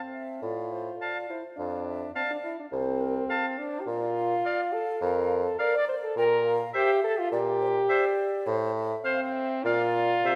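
A mellow, hollow concert flute carries the melody from the opening moment, joined at once by a bright oboe with light vibrato on a second line and a clear, up-front French horn in accompaniment, in this graceful, lively classical-period movement for wind quintet in a straight 4/4. A warm, soft-attacked bassoon enters on the bass at 0.4 seconds, and a clear, vintage-toned clarinet adds accompaniment from 1.0 seconds, with the horn sitting loudest in the blend. The airy flute's vibrato and the recital hall's wet reverb lend a graceful sheen to this short cut from a longer piece.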